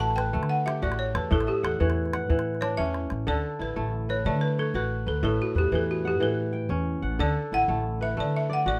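West African traditional string and xylophone music in a flowing, hypnotic 12/8 at 122 BPM in D major, where a woody, buzzing balafon struck with hard rubber mallets carries the melody over crisp, ringing fingerpicked kora arpeggios and a thumpy pizzicato upright bass, both up front, while a small, close calabash adds percussion and a fill before stopping at 3.3 seconds, all set in light reverb.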